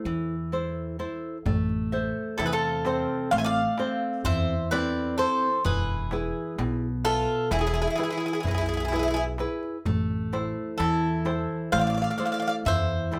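A picked Greek bouzouki carries the melody from the opening moment, its doubled metallic strings, some tuned in octaves, sitting up front beside a fingerpicked classical nylon-string guitar that is just as close. A woody, thumpy upright bass on gut strings joins almost at once, played pizzicato with a dark low end. This is a wistful, melancholic piece of Greek folk for a bouzouki band, moving in 9/8 at 129 BPM with a straight feel in A harmonic minor, the harmony passing from Am to E and back to Am. At 1.5 seconds a deep, large clay-shell darbuka with a natural skin enters in the background, played with soft hands and given a compressed, saturated sound. A second bouzouki adds a brighter line from 2.4 seconds in a narrower middle register, and moderate studio reverb holds the ensemble together in this short cut from a longer piece.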